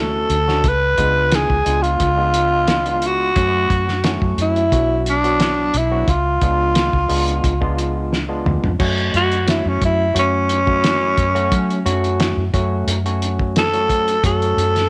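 A small-room ambience with light reverb frames this brooding, mournful straight-eighth soul blues, where a growling, breathy tenor saxophone sings up front with scooped notes and turns to a solo at 8.8 seconds over a barky tine electric piano with overdrive and subtle chorus, a round, foam-muted fingered bass, and a cloth-damped, thuddy, lo-fi drum kit with a fat snare and dark cymbals that enters at 0.3 seconds and plays a fill just before the solo.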